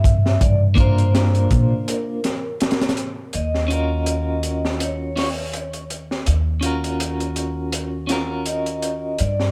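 This dark, cinematic trip hop excerpt opens with a crunchy breakbeat kit, a woody pizzicato upright bass and a ringing vibraphone melody, moving at 82 BPM in 4/4 with a light 16th-note swing in Eb dorian. The drums sit up front, saturated and gritty with a punchy kick and a high-tuned snare, while high-pass filtering on the kick, hats, snare and room thins out their lows and their rolled-off top keeps them dusky. The upright bass is thumpy and close, its gut strings giving a rounded weight. At 0.8 s a bright, clean, compressed electric guitar enters with picked accompaniment colored by tremolo and tape echo. The close-miked vibraphone carries a medium motor vibrato, roughened by vintage 12-bit sampler grit and trailed by tape echo. A break arrives at 1.9 s, and at 3.3 s the harmony shifts from Gm7 to Ebm7 as a new section begins, all within a small room reverb.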